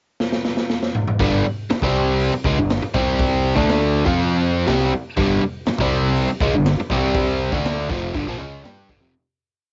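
Swaggering and raw, this short garage rock piece stomps along at 121 BPM in a straight 4/4, opening with a pickup bar in which the punchy, saturated drum kit plays a fill on its own before the band kicks in at 1.2 seconds. A biting, double-tracked overdriven guitar carries a power-chord riff moving through G5, C5, D5 and F5, while a fuzz-laden picked bass drives eighth notes that double the riff, and the gritty kit keeps a garage stomp groove with hi-hat, kick, snare and toms in a small, pumping room. The home cassette recording has a rolled-off, dusky top and light reverb, and the whole thing fades out from 7.2 seconds.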